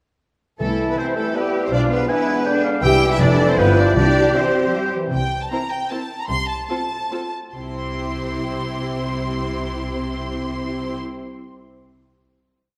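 In a brisk, straight 3/4, this lively, cheerful classical-period orchestral piece sets a rich violin section's melody over a clear violin section and lush viola section playing after-beat chords, with an up-front pizzicato double bass section and an intense cello section's counter-melody below, while a pure flute and mellow clarinet double the tune, a vintage-toned oboe and background bassoon weave independent inner lines, and a French horn section and hard-mallet timpani on bass notes drop out by 5.1 seconds, before the strings slow into a final chord at 7.6 seconds that rings in a reverberant recital hall.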